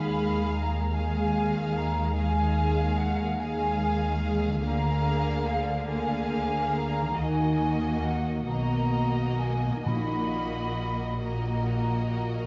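A fragment of a slow, romantic orchestral movement in Eb minor opens with the full ensemble already sounding: a violin section carries the expressive melody with vibrato and a soft attack, while a large flute ensemble floats a distant, airy second line in straight tone above it. Beneath them, a second violin line and a lush viola accompaniment sit inside a smooth string bed. A very quiet concert harp rings out arpeggios, and the bass is anchored by a rich, bowed cello section in the background and a double bass section placed up front. Moving in a rubato 12/8 at roughly 42-50 BPM in dotted quarters, the music feels solemn and yearning as the harmony settles onto Eb minor. At 9.9 s, timpani played with hard mallets on calf heads enter, articulate, close and dry, sounding until 11.2 s. The scoring-stage reverb and dark production give the whole a gentle, enveloping glow.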